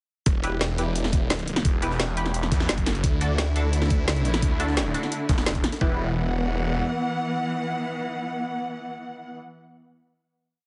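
A snarling, growling saw bass with distortion and tube saturation drives this brief, aggressive and futuristic piece of dark technical drum and bass at 173 BPM in E minor, playing chopped phrases over a knocking, overdriven electronic kick, a tight kit with a woody snare and bright hats, and a very quiet, gritty, pitched-up breakbeat loop. Sparse, nasal, band-passed chord stabs echo through phaser and chorus, while a rich bowed string section enters at 3.0 s with sidechain pumping as the harmony moves from Em to D. The drums stop around 5.8 s and the bass carries on until 6.8 s, while the strings and stabs sustain a final Em chord, all heard through a heavily compressed, radio-like sound with light reverb.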